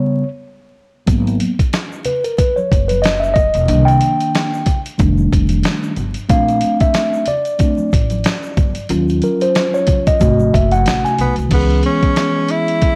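A mellow, clean tine electric piano sits up front and carries this smoky, nocturnal jazz-hop fragment, playing alone for its opening break and taking a solo through most of the passage, its rootless chords sounding through the instrument's built-in speakers. At 1.1 seconds the groove arrives: a compressed, gritty sampler-style soul drum kit with a thumpy kick, a fat snare, hi-hat and crash, re-recorded in a large room and placed up front. Beneath it, a woody, dark upright bass is plucked on steel strings, while an egg shaker and soft-handed congas add a saturated layer in the background. The 16th notes carry a gentle swing. Near the close, at 11.2 seconds, a breathy tenor saxophone steps forward with a jazz-style subtone, light vibrato and scooped notes, as the harmony shifts into a new section. The whole piece has a dusty, hardware-recorded character with vinyl crackle and a touch of studio reverb.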